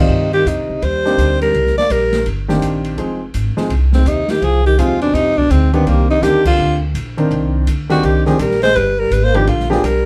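A late-night, swinging mood runs through this short jazz excerpt cut from a longer piece, a small-group swing and bop tune in C minor at 166 BPM in 4/4 with a 63% swing on the eighth notes. A growling alto saxophone carries the melody up front, its raspy, close-miked subtone full of scooped notes, while a breathy trombone sits farther back on a second line, dark and whispered in a roomy space. A clear, slightly worn concert grand piano with deep bass supplies the accompaniment, and a woody pizzicato upright bass anchors the low end. The open jazz drum kit, which comes in at 0.5 seconds, sounds dark and smooth with a boomy kick and a rolled-off top, mixed well beneath the horns. The harmony moves from Cm9 to Fm7 and back before turning to G7#9 near the end, with a band accent landing at 6.4 seconds, all under a light reverb.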